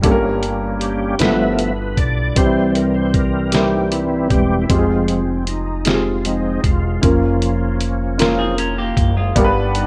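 A bright, reedy tonewheel organ with key click and fast rotary-speaker chorus vibrato carries the solo up front in this fervent, solemn slow gospel fragment in 6/8, over a dark, mellow upright piano with short sustain, a woody upright bass and a compressed, muffled lo-fi sampler-style drum kit with a thumpy kick and fat snare, while a clean semi-hollow electric guitar adds a brief second line from 8.2 to 9.5 seconds, set in light reverb.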